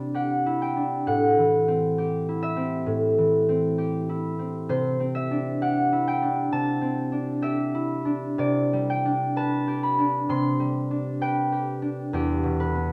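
Classical solo harp piece, dreamy and graceful, unfolding at a slow 65 BPM in 4/4 with a rubato feel, tuned to A4 = 436 Hz. The concert harp plays alone, mellow and ringing, fingerpicked up front across a range from E2 to C6, drifting through lush chords such as Cmaj9, Am9 and C69 before settling on Em7 near 12.1 seconds. A dark production and a recital hall reverb with a 1.4 second decay frame this short cut from a longer work.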